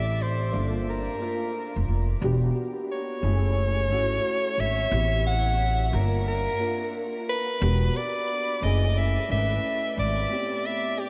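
A bright, close-miked soprano saxophone carries the jazz-style melody up front with vibrato and scooped notes, trailed by a diffuse ambient delay, over a dark, boxy concert grand piano thickened by ensemble chorus and a woody, growly pizzicato upright bass that drops out at 10.2 seconds, all in a cool, smoky swung jazz-hop fragment whose dreamy mix is soaked in huge reverb and vinyl crackle.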